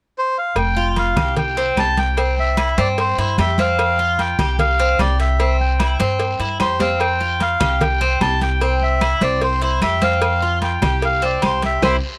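Close, detailed and nearly dry, this sunny Cuban son and guajira passage, cut from a longer piece, opens with a reedy, breathy melodica alone at 0.2 seconds before the band arrives at 0.6 seconds. The melodica's nasal, vintage tone stays up front alongside a dark, thumpy pizzicato upright bass on gut strings, and at 0.8 seconds a picked Cuban tres joins, its metallic double strings spinning arpeggios over alternating Fsus2 and C chords. Bright, thin-skinned congas lead the percussion, while a round, low-tuned cowbell, ringing agogo bells and timbales, and a raspy guiro in a small room sit in the background and woody claves tick very quietly beneath. A drum fill at 6.6 seconds breaks up the groove, and a band accent closes the passage.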